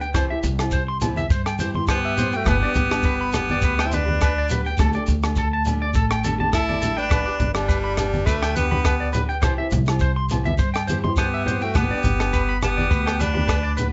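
Highlife guitar band in G major at 103 BPM with a swung 4/4 feel, carefree and sunny, cut from a longer piece. A twangy electric guitar at the edge of break-up plays bright arpeggios with slapback echo over a background fingerpicked steel-string acoustic guitar, woody pizzicato upright bass, and a compact cocktail drum kit with a dry, punchy kick, hi-hat and rim click, plus soft-handed low-tuned congas, grainy shekere and ringing agogo bells. From 1.9 seconds an edgy, forceful tenor saxophone leads up front with scooped notes and plate reverb, while a smooth trumpet with vibrato carries a second line behind it, all in a small, moderately reverberant room with a soft, rolled-off top.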